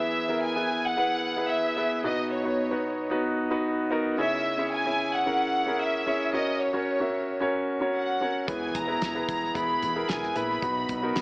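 A straight 4/4 pulse at 112 BPM carries this anthemic, uplifting piano-driven pop excerpt in B major, where a clear concert grand piano, with audible action noise and long sustain, and a soft-bowed chamber violin section playing the melody with light vibrato both sit up front under a dub echo. The chords move through E, B, C#m and F#, and as the progression returns to E and B at 8.5 s, a dry, damped 70s drum kit with a fat snare and tight kick enters together with a round, woody fretless electric bass. The whole mix has an echo-heavy, AM radio character, set in a small room with moderate echo chamber reverb.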